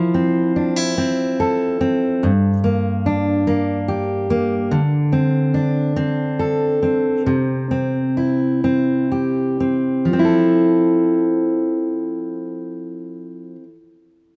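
A full-bodied jumbo steel-string acoustic guitar with fresh strings plays alone up front, fingerpicking a swaying, heartfelt pop passage in 6/8 through Fmaj7, Gm, D5 and C, slowing between 4.7 and 10.1 seconds before settling back on Fmaj7, all wrapped in a moderate echo-chamber reverb and a dark production in this 13.7-second excerpt cut from a longer piece.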